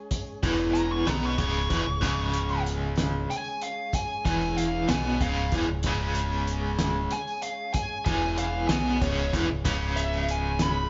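A reedy combo organ with heavy vibrato opens this trippy, kaleidoscopic psychedelic rock passage in 6/8, joined at once by a muffled, cloth-damped drum kit with a fat snare and a faint jingly tambourine, then by a biting, double-tracked overdriven guitar riff with tremolo and a growling overdriven bass from 0.4 seconds, while a dark fuzz lead guitar soaked in wah solos in a high register from 0.7 seconds, all captured live in one room with a large studio reverb and a rolled-off top end.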